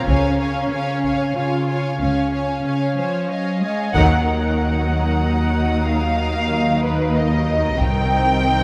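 In a straight triple metre, this mysterious, tense stretch of suspense film score sets a lush, bowed violin section on the melody over a focused second violin line, intense violas, smooth cellos and soft-attack double basses, all with vibrato, while a taiko ensemble with heavy sticks thuds in the background. At 3.9 s the whole band lands an accent, and a faint, expressive studio violin section enters high above as texture until 7.5 s. The harmony moves from C# to Eb minor and closes on Cm7, all bathed in a cavernous cathedral reverb that makes the strings sound as if they are playing in a vast, echoing space.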